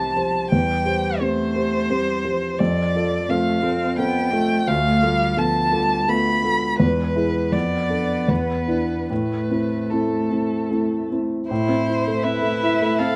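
In a flexible, rubato triple metre, this slow romantic movement for piano quartet unfolds with a melancholic, yearning mood, a short passage cut from a longer piece. A single violin carries the melody in a rich tone, shaped by vibrato and expressive portamento, while a solo cello sings a smooth, even second line beneath it, also with vibrato. The concert grand piano sits up front with a warm accompaniment, its deep bass and short sustain grounding the texture. At 11.5 s a second violin joins on a second line, entering with a soft attack, vibrato and portamento for the final moments. The harmony drifts through darker chords before settling on A minor at 9.1 s, and a light reverb gives the ensemble a gentle sense of space until the passage ends at 13.2 s.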